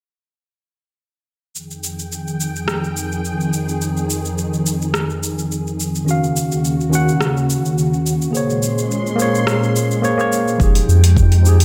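A relaxed 106 BPM groove with swung sixteenths opens this wistful sunset chillout excerpt, as an overdriven deep house kit of metallic hi-hats, rim click and shaker, set in a large room, joins a silky, dark string machine whose ensemble chorus holds sustained chords from Fm9 through Ebm9 and Bbm9. At 6.0 s a mellow, worn, slightly out-of-tune tine electric piano with delay adds up-front accompaniment. At 10.6 s the harmony returns to Fm9 as a round sine sub bass with tube saturation and a deep, overdriven electronic kick drop in beneath a light reverb.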